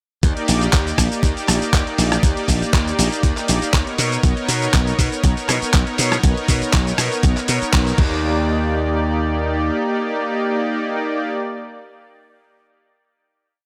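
This short, feel-good nu-disco piece opens at 0.2 seconds straight into a sunny drop, with every part sounding together over a lightly swung sixteenth-note groove. A thumpy, overdriven electronic kick drives a four-on-the-floor pulse, while a dusty, gritty sampler-style soul kit, compressed and captured in a small room, sits up front with a disco backbeat of handclaps, closed and open hi-hat, rim clicks, cabasa and crash cymbal. A glassy, punchy slap bass jumps between octaves, bright and direct in the mix. A detuned sawtooth pad with a soft attack and a smooth, warm tone holds drop-2 voiced chords with syncopated pushes, moving from Ebmaj7 to Bmaj9 and back, colored by chorus, tremolo, delay and sidechain pumping. The band lands an accent just before the final hit at 8.2 seconds; the drums stop there, the bass follows shortly after, and the pad rings on alone until 11.3 seconds under a light reverb.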